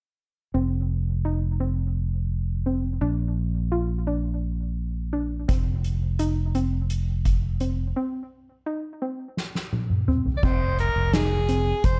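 Progressive instrumental band music in 7/8 with an intricate, brooding mood, where a gentle, round pluck plays arpeggios through chorus and analog delay over a punchy fingered electric bass, a soft-mallet drum kit with dark cymbals and a fat snare joins at 5.5 seconds before a break and a drum fill, and a clear soprano saxophone with light vibrato and scooped notes takes the melody at 10.4 seconds, in a dusky production with light reverb.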